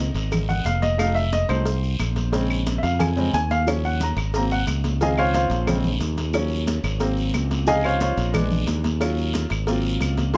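Sophisticated and lively, this brief Afro-Cuban jazz excerpt in Db major moves at a brisk 180 BPM as a clear, up-front baby grand piano solos over rich chords like Dbmaj9, F7b9 and Ab13, anchored by a punchy, direct fingered electric bass, while bright high-tuned congas, a tight close cowbell, woody claves, a raspy distant guiro and grainy, mellow maracas fill out the percussion beneath light reverb.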